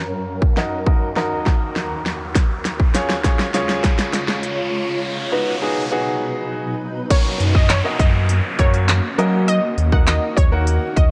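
Euphoric and summery, this dance-pop excerpt builds over a shimmering, ethereal pad with chorus and sidechain pumping, a baby grand piano with long sustain, riser and downlifter effects, and a punchy, up-front pop drum kit with handclaps and crisp hats. A drum fill leads into a break at 4.7 seconds, while a filter sweep builds steadily toward the drop. At 7.1 seconds the drop arrives: a round, vintage analog pluck carries the melody through chorus, and at 7.4 seconds a deep sub bass with an octave enters with sidechain pumping, all heard through a worn, warbling cassette-tape character with pitch drift and light digital ambience.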